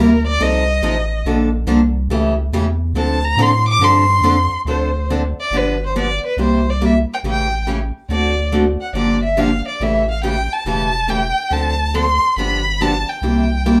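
This is a short cut from a longer acoustic string swing piece in the jazz manouche style, set in D minor at 140 BPM with a lilting swing and a bittersweet, swinging mood. A rich, smooth bowed violin carries the melody with even vibrato, taking a solo passage over the first 4.7 seconds before the tune moves into a second section at 4.7 seconds. Beneath it, a bright, boxy parlour steel-string guitar supplies picked accompaniment, while a deep, round sine-like sub bass with a fast attack and sustained notes gives a warm foundation. All three parts sit up front throughout, moving through harmony that begins on F7/C and Bbmaj7 and later cycles through dominant chords such as G7, C7, A7 and D7 before closing on Dm7, G7 and C7. A wet club reverb gives the sound a small-room glow, and lossy compression artefacts lend the recording a slightly worn edge.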